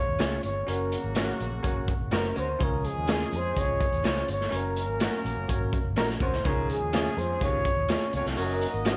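A breathy, whispered trumpet carries the melody over a joyful, uptempo 1960s-style soul groove at 125 BPM in Db major, backed by a warm horn section with octave doubling, a dark, foam-muted fingered electric bass, a bell-like tine electric piano, slightly broken-up electric guitar stabs through a small old amp with spring reverb, and a gritty garage drum kit with a boomy kick up front in a pumping small room, while a clear, distant baritone saxophone adds a riff from 6.5 seconds in this short section cut from a longer piece.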